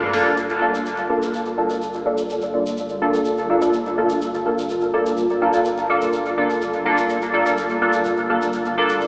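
Heard through a bare stone room on a big sound system with an AM-radio haze, this cavernous, meditative dub techno excerpt in G dorian at 125 BPM sets up-front, juicy stabs from a resonant, detuned sweep polysynth, sent through chorus, phaser, cassette tape and dub echo and filter-swept from 0.4 s, over a Gm7 bed of blurred, evolving granular cloud pad and a soft, round sub bass in the background, while a brief overdriven deep house kit with metallic hats flashes crash, hi-hat and ride as a grainy, vintage egg shaker enters at 0.4 s and carries on.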